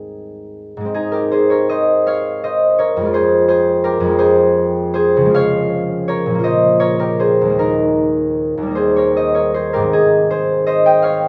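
A mellow, ringing concert harp sits up front and plays alone from 0.0 to 11.3 seconds in this graceful, dreamy classical piece in Ab major, fingerpicked with a rubato lilt in 6/8 at around 48-58 BPM, moving from Ab through Fm, Db, Bbm and a suspended Eb back home to Ab, all bathed in a moderate recital-hall reverb.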